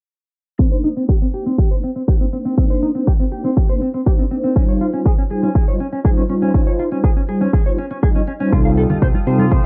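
An up-front, punchy overdriven electronic kick drives this cosmic, sensual nu-disco excerpt at 121 BPM in C dorian, under dark, chorus-drenched synth brass with tape echo and a clean, picked electric guitar riff whose filter sweeps across the Cm9 and Dbmaj9#11 chords, while a very quiet electronic hi-hat ticks along beneath. At 8.5 seconds, on an F9/C chord, a fat, detuned analog bass and distant, floating strings arrive with sidechain pumping, and close, dry congas slip into the background at 8.9 seconds. The whole sound carries a gritty, hardware-recorded digital ambience.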